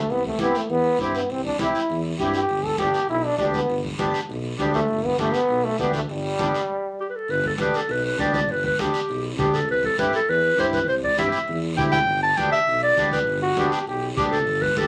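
A straight 4/4 cumbia pulse at 200 BPM in G major drives this festive, joyful excerpt: a bright, growling trombone with scooped notes solos up front from the start, a breathy clarinet with a soft, subtone attack enters at 7.0 seconds to carry the melody, a warm tuba anchors the bass, a reedy accordion with slow beating fills the accompaniment, and ringing congas sit in the background beside a raspy guiro, all in a small, reverberant room under a layer of vinyl crackle.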